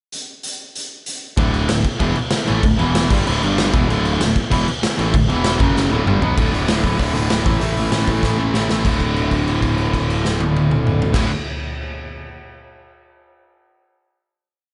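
Punk rock at 193 BPM in D major, rebellious and rowdy, opening with a raw garage drum kit alone for a pickup bar before the rest of the band crashes in at 1.4 seconds. Up front, the saturated, gritty kit with its punchy kick and bright stone-room sound drives a fast punk groove, while an overdriven guitar and a distorted guitar sitting in the background churn out eighth-note power-chord riffs over a growly fuzz bass that doubles the guitar riff. Drum fills at 5.8 and 8.2 seconds push through a short outro into a final D chord, its note held from 8.9 to 11.1 seconds as this complete piece closes.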